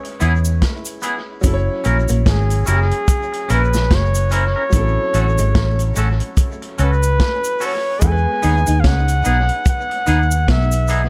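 A swung 16th-note groove at 73 BPM sets up this sweet, tender lovers rock reggae clip in E major, driven by a vintage drum kit with a punchy kick, medium-tuned snare, hi-hat and dub echo, together with a dark, round, foam-muted fingered bass sitting up front and a cabasa-like tube shaker with group handclaps touched by dub echo. A clear concert grand piano with deep bass and long sustain supplies accompaniment, while a clean, twangy electric guitar plays stabs and a bright, slightly broken-up guitar through a small old amp picks a lo-fi riff with dub echo in the background, over chords moving from C#m7 and F#7 to A6 and a rootless Emaj7. At 2.3 seconds a warm flugelhorn enters with the melody, soloing in a jazz style with light vibrato, scooped notes and tape echo, all set in a small room ambience.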